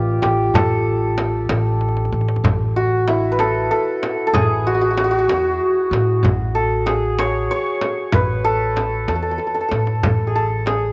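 A shimmering, ringing santur carries the melody up front in this hypnotic, longing Persian modal ensemble piece in 6/8, cut from a longer performance, over a woody pizzicato upright bass, with a small, bright frame drum and a deep, very quiet tombak played with soft hands joining at 0.2 seconds and adding drum fills around 1.8 and 9.4 seconds, all set in light reverb and a small room ambience.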